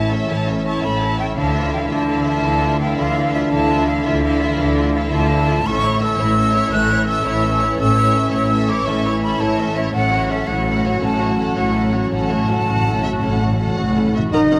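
Heroic adventure film score in 12/8 at 112 BPM, this soaring, triumphant passage, cut from a longer piece, has a lush violin section carrying the melody with focused vibrato while a bright, airy silver flute and a second, background violin section trace supporting lines over clear violas, a mellow, tight French horn section holding chords, and faint ringing harp arpeggios. Rich cellos and clear double basses anchor the bass beneath an A, Dmadd9, A, F#m/A progression, and timpani struck with hard mallets on calf heads sit back in the mix, entering at 5.7 seconds and returning with a fill from 9.9 seconds. At 14.3 seconds a distant, roomy oboe and a very quiet trumpet stab appear, all bathed in a scoring-stage reverb.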